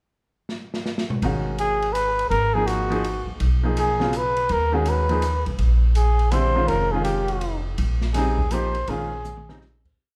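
A drum fill on an open jazz kit with a smooth ride pattern and a boomy kick opens this intense, cool modal jazz waltz, swung at 164 BPM in G# dorian, before a woody, thumpy pizzicato upright bass in a two-feel and a clear, intimate baby grand piano with audible action noise, comping in quartal voicings, arrive at 1.2 s, followed at 1.6 s by an up-front dark trumpet playing a motif-based solo with vibrato and scooped notes over G#m11 and A#m11 chords, the whole piece set in a moderate recital hall reverb until the fade-out that begins at 8.2 s.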